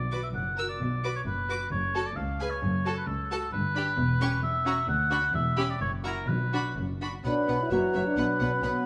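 Cheerful and graceful, this quick classical-period orchestral passage in B minor moves at 131 BPM in 2/4 with a rubato feel, its violins carrying a distant, expressive melody with vibrato and portamento over second violins, a background viola accompaniment, a lush, close cello section and an intense, clear double bass line. A warm, up-front oboe sings a second line throughout, while timpani with calf heads and medium mallets sound in the background at the start and again around 6.3 seconds. At 7.3 seconds an airy flute, clarinet, dark bassoon and a mellow, tight French horn section join, all set in a moderate recital hall reverb.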